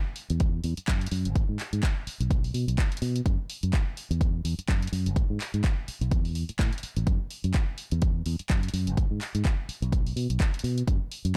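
An analog drum machine with handclaps and hi-hat opens this short, nostalgic cut of filtered disco house at 126 BPM with a swung groove, joined by a fingered electric bass that spans G#1 to B2, pumps under sidechain and rides a low-pass filter sweep, while a punchy, layered, tape-saturated electronic kick sits up front in a dark, dry mix.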